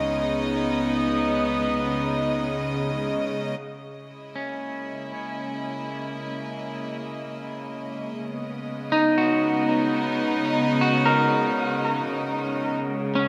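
Ambient music in free time and C# dorian, reflective and serene, this short passage is cut from a longer piece and heard through a wet spring reverb in an echo-heavy mix. A rich chamber string section sustains bowed chords with light vibrato from the start, its earthy, close ensemble tone sitting up front across a range from C#3 to D#5. Beneath it, a round analog bass holds a deep C#2 far in the background, dark and detuned, fading out over the opening before returning briefly at 12.8 seconds. At 4.4 seconds a twangy electric guitar at the edge of break-up enters with fingered arpeggios between C#4 and A#4, its slightly broken tone carried by dub echo. The harmony drifts from G#m/C# to C#m69 at 3.6 seconds and back, while the strings fade in through the middle stretch before settling on a bare C#5 chord.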